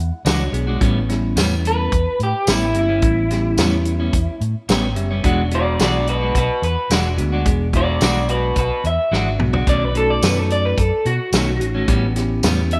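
A twangy, slightly broken-up electric guitar through a small old amp carries the lo-fi melody from 1.7 s, with a subtle chorus, over a laid-back, gritty straight-eighth soul blues at 108 BPM in 4/4, moving through E9, A9 and B9 chords. A round, foam-muted vintage fingered bass and a roomy soul drum kit with a tight kick, medium-tuned snare, tambourine and toms sit up front, with a drum fill at 9.1 s. A dark, clean guitar adds picked stabs with slapback echo, and a bell-like tine electric piano comps and drops in brief fills, all within a moderate echo-chamber reverb in this cut from a longer piece.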